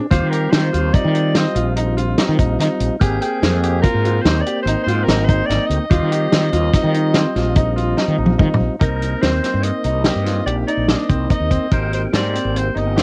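A percussive tonewheel organ sounds first at 0.0 seconds, mellow and round with light overdrive, chorus vibrato and a fast rotary speaker. The rest of the band arrives a moment later in this bright, driving progressive instrumental at 145 BPM in 7/4 with a straight feel in Eb major. A breathy soprano saxophone carries the melody with a soft attack, scooped notes, vibrato and an intimate, whispered tone. A brilliant grand piano plays short-sustained arpeggios colored by tape echo, while a growly, direct fretless electric bass with subtle chorus sits up front beside a dry, mid-forward soul drum kit with a tight kick and a rolled-off top. The harmony moves between Eb6 and Abmaj7, and a drum fill at 8.0 seconds leads into a new passage on Cm7 at 8.8 seconds. The organ, saxophone, piano and drums carry the hazy grain of a cassette home recording in a light reverb, and the clip is cut from a longer piece, ending at 13.0 seconds.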